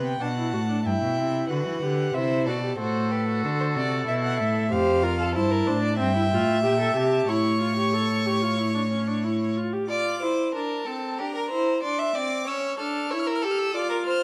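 A single bowed violin carries the melody with a warm, expressive tone, its soft attack, vibrato and portamento giving the lines an elegant, stately grace as it ranges high above the ensemble. Beneath it, a second violin weaves a rich, smooth and even counter-line, while the viola fills in the accompaniment with a focused sound and a smooth top, both sitting up front. The cello anchors the bass with light vibrato and a steady, even tone until it drops out at 9.5 s, leaving the upper three strings to finish the passage. This baroque-style fugue for string quartet moves in a straight 4/4, its harmony turning toward darker minor colours and diminished chords before a new section opens at 9.9 s. Close, detailed microphones catch each player clearly inside a moderate recital hall reverb, and the fragment breaks off at 14.2 s, cut from a longer piece.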